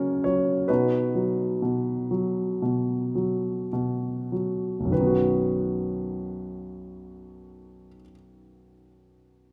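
A baby grand piano sits up front in a wet recital hall, with the reverb trailing about 1.7 s behind each note. This is a calm, tender classical piece for solo piano in B major, tuned to A4 = 441 Hz and cut from a longer work. The piano sounds warm and natural, with a short sustain, and ranges from B1 to D#5 over its 9.5 s. The tempo moves freely between 49 and 70 BPM in 4/4 with a rubato feel, and it slows down through the opening phrase until 4.9 s. The harmony moves from F# to B within the first second, and a new section begins at 4.9 s.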